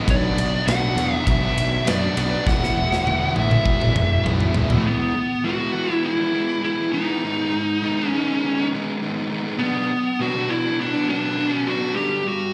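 This cut from a longer piece sounds like a live gig heard through the venue's PA, with light, recital-hall reverb around the band. It's quiet-loud alternative rock in a straight 4/4 with a cathartic, anthemic mood. A biting overdriven guitar and an up-front, hollow-bodied semi-hollow guitar play picked riffs, both treated with slapback echo, while a fuzz lead guitar carries the distorted melody above them. Underneath, a growly, punchy fingered bass with fuzz and overdrive joins a big acoustic kit of boomy kick, medium-tuned snare, ride and toms, which plays a fill from 2.5 seconds. At 4.8 seconds the drums, bass and biting guitar drop out, leaving the semi-hollow riff and the fuzz lead to carry the repeated section through chords moving from G#m to Bm and finally G.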